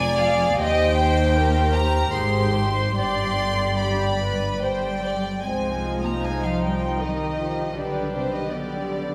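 A rubato 3/4 pulse drifting between 69 and 82 BPM carries this yearning, elegiac fragment of a slow romantic movement for string orchestra in C minor, where a softly vibrato violin section sings the melody above a dark, floating second violin line, rich sul tasto violas, intimate cellos with vibrato and clear, pure double basses, the music turning to a new section at 5.5 s while the close string sound blooms into the lush reverberation of a church or concert hall.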